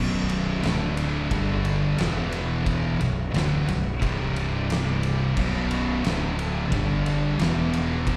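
Stoner and doom metal in B minor at 89 BPM in a straight 4/4, this short cut from a longer piece feels sludgy and ominous, heard as a live gig through the venue's PA with recital-hall reverb. Two thick fuzz guitars sit in the background playing the riff, one dark and one warm, beside a scooped, high-gain guitar that is bright and double-tracked. A fuzz-laden fingered electric bass, overdriven, round and punchy, carries the low end from B0 to G1. The oversized low-tuned drum kit enters at 0.3 seconds with a punchy kick, fat snare, dark crash and ride cymbals and a gritty, saturated stone-room sound. Very quietly underneath, a reedy tonewheel organ holds sustained chords with key click and a slow rotary speaker. The riff cycles through B5, D5, G5 and E5, touching Bm and C5 before returning to B5 at 5.4 seconds.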